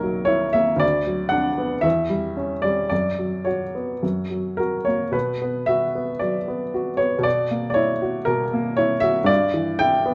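Close, detailed microphones place a clear upright piano up front in a moderate recital hall, whose reverb of about 1.5 seconds gives the room a gentle halo. This is a brief excerpt, cut from a longer romantic character piece for solo piano, brooding and bittersweet in mood. The tempo floats between 107 and 120 BPM in 4/4, shaped by a flexible rubato that lets the phrases breathe. The instrument sounds intimate and woody, with short sustain and audible action noise that keep its natural character in view as it moves across a range from B1 to G5. The harmony opens on F#7/B, passes through Bm/D and C#dim/E to a suspended F#sus4 that settles onto F# at 4.0 seconds, then returns to Bm before touching F#7/B again and closing on Em7/G at 9.3 seconds.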